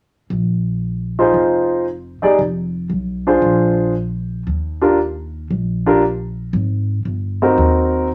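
This small-group swing and bop jazz excerpt, cut from a longer piece, has a relaxed, sophisticated mood at 116 BPM in 4/4 with a swung eighth-note feel in Bb mixolydian. A pizzicato upright bass opens at 0.3 seconds, its dark, growly, thumpy tone sitting up front on steel strings. At 1.2 seconds a warm upright piano joins as accompaniment, its woody, natural voice carrying a long sustain and also placed up front, noticeably louder than the bass. The harmony moves from Bb7sus4 through Fm and Bb9 to Ebmaj7 and then Ab9, giving the passage an easy, polished flow. Both parts play together until the fragment ends at 8.1 seconds, framed by a moderate studio ambience with a short room decay.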